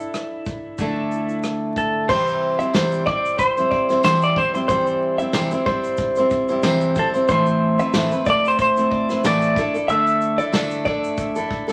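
Vinyl crackle and a moderate studio reverb frame this carefree, easy-going acoustic pop excerpt at 92 BPM in C major, where an up-front clean lap steel guitar carries the melody with slide, fingerpicks and volume swells over a full-bodied picked dreadnought acoustic guitar and a vintage brush drum kit with dark cymbals and a punchy kick, while a bright, compressed direct electric guitar adds background arpeggios from 2.1 seconds and a jingly, distant tambourine sits very quietly from 2.7 seconds.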